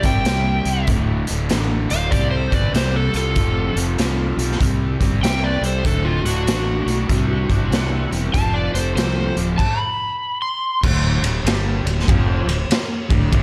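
A gritty, driving blues rock and southern rock groove at 96 BPM with a swung 4/4 feel opens with an up-front overdriven slide guitar melody over a dark, distorted lead line in the background, a double-tracked hollow-body guitar riff, a very quiet tonewheel organ holding thick chords through slow rotary speaker and key click, a growly fuzz bass and a raw, saturated garage kit with a boomy kick up front, all in a small pumping room, until the slide drops out at 10.8 seconds and the riff, bass and drums drive on over a Dmadd11 to the cut at 13.4 seconds.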